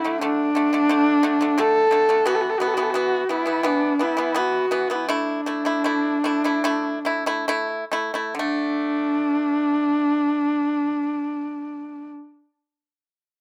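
A straight four-beat pulse drives this Mongolian traditional piece, which feels vast and galloping even as it slows between 2.3 and 8.4 seconds. A horsehead fiddle carries the melody from start to finish, its bowed horsehair strings giving a rich, husky, focused tone, shaped with vibrato and portamento by a single player. Beneath it, a pipa plucked with fingerpicks supplies arpeggios in a lower register, sounding acoustic, dry and percussive. Both instruments sit up front in an outdoor setting with little reverb. The harmony moves from D5 to E5 and A5, then returns to D5 at 8.4 seconds as a new section begins, and the music is cut from a longer piece.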